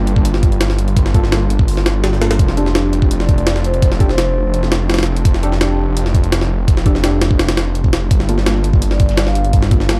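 A gritty, compressed jungle drum kit with a thumpy kick and high-tuned snare drives this nostalgic, atmospheric drum and bass passage at 168 BPM, sitting up front beside a thick, menacing detuned saw bass that holds low and saturated under chords moving between Gm7 and F6. Deep, nasal chord stabs carry chorus and dub echo in the background over a very quiet, warbling lo-fi pad, while a mellow vibraphone played with soft mallets rings out briefly at 3.2 seconds and again near the end, trailed by dub echo. At 8.1 seconds a very quiet, crunchy breakbeat kit with shaker and a rolled-off top slips in beneath, all within a dark production and small room ambience.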